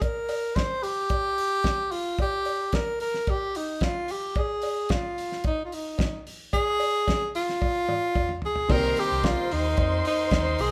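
A live-in-one-room sound with a moderate large studio reverb frames this glamorous, danceable disco excerpt at 111 BPM in straight 4/4, where a breathy, close-miked tenor saxophone sings a scooped jazz-style melody up front over a dry, damped 70s drum kit with a fat snare, tight kick and dark cymbals, while a metallic cowbell ticks in the background. A drum fill at 7.6 seconds leads into a shift to Cm7 at 8.7 seconds, where a lush, bowed symphonic string section with vibrato and a soft attack, a round hollow-body electric bass, a mellow grand piano and a lightly overdriven tonewheel organ with key click and percussive third-harmonic chords all enter together.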